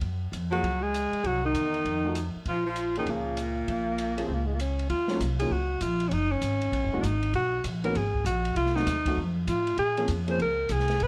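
Small-group swing and bop jazz in Bb minor at 197 BPM, smoky and late-night, with a woody, thumpy pizzicato upright bass up front and an open drum kit of dark cymbals and a boomy kick driving a swung 4/4 from the start. At 0.5 seconds a mellow alto saxophone takes the scooped, vibrato-laden lead, joined by a clear, soft-attacked baritone saxophone second line that drops out at 4.6 seconds, while a concert grand piano with deep bass and long sustain comps through changes running from Gbmaj7sus2 and F7b9 to Ebm9, Gb13 and a closing Bbm9. The drums have a small-room sound, the mix carries light reverb, and this excerpt is cut from a longer piece.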